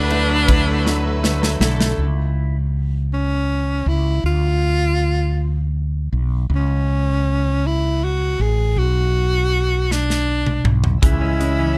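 The recording has a dry room sound, with plate reverb on most parts, in this tender, heartfelt six-eight pop ballad taken from a longer piece, moving slowly at 53 BPM counted in dotted quarters. A breathy, close-miked tenor saxophone carries the melody throughout in a jazz-style subtone with vibrato, while a round, dark fretless electric bass holds the low end up front. The opening is fullest: a lush, focused violin section adds a second line, a clear baby grand piano accompanies from the background, a smooth, woody string section sustains high chords, and a bright, twangy clean electric guitar plays compressed, picked arpeggios through plate reverb and digital delay. A polished acoustic drum kit with a punchy kick and bright cymbals plays a fill before dropping out at 2.0 seconds. The guitar lingers until 2.6 seconds, after which the saxophone and bass carry on together over chords moving from C#m through Dm, A/C# and Bm. 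The drums return at 9.9 seconds with another fill, and piano, guitar and the string section rejoin at 11.0 seconds as the harmony settles back on C#m.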